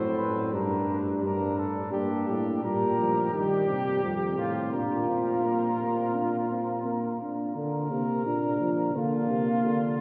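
Bathed in a wet cathedral reverb and heard from far back in the room with softened highs, this driving yet contemplative imitative canzona for brass ensemble, cut from a longer piece, moves at 86 BPM in Bb major; a dark trumpet with light vibrato carries the melody up front over a warm bass trombone, a mellow flugelhorn second line stops at 7.2 s, and a vintage-toned euphonium accompaniment enters at 1.9 s.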